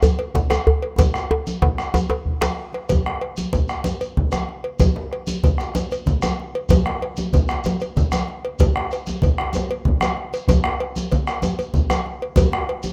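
This rough home demo has a light reverb, capturing a West African drum ensemble in a traditional style that feels powerful and earthy, moving at 126 beats per minute in a straight 12/8. A round, distant bombo sits up front with the air of a large room, while a deep, soft-handed djembe plays throughout in a live room. Bright, damped congas with thin skins and a medium tuning are struck with hard hands, and a metallic cowbell sounds close and dry. A grainy, mellow shekere rings from further back in a large space. A second djembe, tight and cracking and placed up front, plays only until 2.6 seconds, during a drum fill that begins at 1.0 seconds and carries the opening into a new section at 2.9 seconds, where the groove continues as part of a longer piece.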